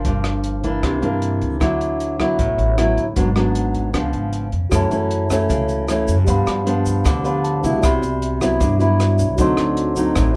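A light reverb surrounds a small band playing live together in one room, in this short excerpt of romantic, sunny bossa nova with a straight feel in 4/4. Up front, a classical nylon-string guitar with fresh strings is thumb-plucked through rich chords such as Gm7, C9, D69 and Cmaj9#11. Beneath it, a woody, growly pizzicato upright bass strung with steel sits alongside a compact cocktail drum kit, whose dark, smooth hi-hat, punchy kick and rim click have a rolled-off top and a small-room character. At 4.7 seconds a mellow, clean tine electric piano enters, heard through its built-in speakers, together with a grainy, bright egg shaker tucked in the background. The electric piano adds brief fills, the first at 7.2 seconds, as the harmony moves through F#m7, G7 and D7b9.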